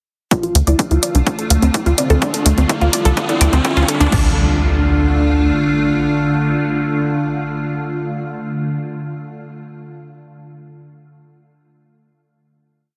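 Squeezed into a heavily compressed, radio-like sound and bathed in a huge ambient reverb, this hypnotic, dramatic melodic techno piece in D minor at 126 BPM builds from 0.3 seconds with a punchy, tape-tinged four-on-the-floor kick, a large-room techno kit of hi-hats, toms and crash playing a drum fill, and a lush, detuned unison pluck whose 32-step arpeggio runs through a filter sweep, 12-bit grit and digital delay, joined at 0.6 seconds by a galloping sixteenth-note sawtooth sequencer bass. Meanwhile a round, octave-layered synth lead with chorus, tremolo and dub echo plays a dark repeating riff over a bright, morphing wavetable pad, and a tense bowed-like drone on D sits in the background as electronic riser and impact effects carry the build to 4.1 seconds, after which the pad, lead and drone hold a final D minor chord to 8.5 seconds.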